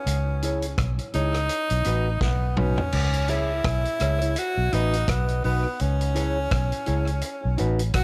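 Laid-back and serious, this short cut from a longer roots reggae piece moves at 84 BPM in C# minor, with a lightly swung sixteenth feel over a C#m to B progression. A clear, close-miked tenor saxophone carries the melody up front with vibrato and tape echo, while a round, foam-muted fingered electric bass sits prominently beneath it and a vintage drum kit with dark cymbals, a punchy kick and a rolled-off top adds rim clicks and toms. A mellow, clean electric guitar played with the fingers, also touched by tape echo, fills in the accompaniment, and a drum fill from 2.2 to 2.9 s leads into the second section, all set in a light small-room reverb.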